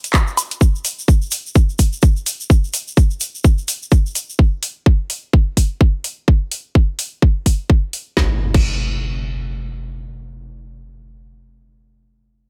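A digital ambience surrounds this gritty, bouncy bass house excerpt at 127 BPM with a swung 16th feel, where a tight, up-front electronic kick and a layered garage kit of woody snare, metallic hi-hats, handclaps, woodblock and crash cymbal drive the groove, a grainy, bright tube shaker sits close and dry until 4.4 seconds, and an electronic impact arrives at 8.2 seconds as a new section begins.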